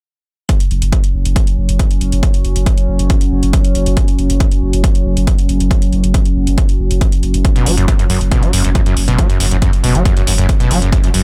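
A straight pulse drives this dark, hypnotic stretch of peak-time techno, cut from a longer piece, with a punchy, layered electronic kick sitting up front from 0.5 seconds. Metallic electronic hi-hats ride alongside it, breathing with sidechain pumping, while a deep, thick sine sub bass holds a single low note under overdrive and a low-pass filter, pumping against the kick. Behind them, an evolving analog drone built from sawtooth and pulse waves with pulse-width modulation arrives at 0.8 seconds, its slow attack, long release and chorus lending a resonant haze that also ducks with the kick. At 7.6 seconds a squelchy, gritty overdriven acid bass riff pushes to the front, its sawtooth tone resonant and distorted, with a filter sweep, lush chorus, digital delay and pumping adding motion. The mix is dry and loud, with drum layers that carry a small-room character.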